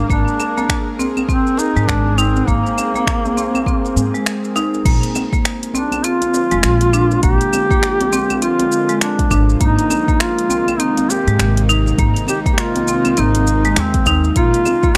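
A clear, up-front duduk with vibrato and scooped notes opens this peaceful, earthy organic downtempo excerpt over a tense, string-like bowed drone soaked in built-in reverb and pulsing with sidechain pumping, all in Bb mixolydian at 101 BPM with a 16th-note swing. A woody, thumpy pizzicato upright bass, bright hard-mallet marimba arpeggios touched with tape echo, a deep, tape-warm electronic kick, and a layered deep house kit of metallic hi-hats, claves, finger snaps, shaker and crash settle into a small, lightly reverberant room, with a band-limited djembe sitting in the background. The harmony moves between Abadd9 and Bb7, shifting to Bb7 at 4.9 seconds as the duduk's tape-echoed folk melody carries on.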